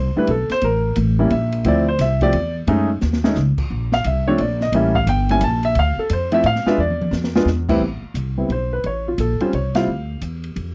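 Jazz piano trio in A minor at 175 BPM, swinging in 3/4 with a smoky, moody air, cut from a longer piece and captured as a dry, close 1970s-style studio recording. Up front, a natural-sounding baby grand carries the melody over harmonies such as Dm9, Bbadd9 and A7b9, while a woody, steel-strung upright bass is plucked pizzicato in its low register, also sitting close. A dark, smooth acoustic kit with a boomy kick, dark cymbals and a rolled-off top enters at 0.3 seconds, adds fills around 3.0 and 6.8 seconds, and the trio hits a band accent near the end.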